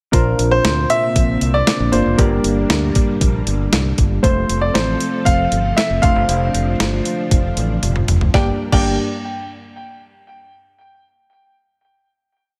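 A thumpy, sampler-style drum machine drives this short, moody 1980s-style pop piece at 117 BPM in a straight 4/4, with a big backbeat and a medium-tuned snare sitting up front, and a drum fill at 7.8 seconds leads into the closing G minor chord at 8.3 seconds. Underneath, a bright, punchy fingered electric bass plays a syncopated pop-funk line, giving the G minor verse an urgent push as the chords move from Bbadd9 through Gm, F and Dm7/F. Glassy digital keys with a sine-like, wave-folded tone, a filter sweep and chorus hold decaying chords in drop2 voicings, while a vintage string machine set to cellos adds a full-bodied, mellow sawtooth pad with a slow attack and ensemble chorus in the background. On top, a clear, intimate grand piano carries a motif-based melody in song-like phrases, its action noise audible and a tape echo trailing its notes. A light reverb ties the parts together, and the piece rests on the final chord until about 10.4 seconds.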